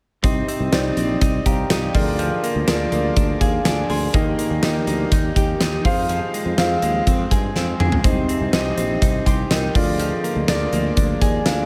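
A huge arena drum kit sits up front in this short cut from a 1980s-style pop track, its punchy kick and fat snare ringing through a big room alongside hi-hat and toms, with a drum fill at 7.6 seconds. Underneath, a sustaining fretless electric bass adds a growly, amped low end, while a concert grand piano with deep bass and a subtle chorus carries the accompaniment and breaks into fills at 3.2 and 11.0 seconds. A clean, picked electric guitar, recorded direct and compressed, plays a riff coloured by lush chorus and delay. The whole mix is dreamy and soaked in a moderate, huge ambient reverb, giving the straight groove a nostalgic yet urgent mood.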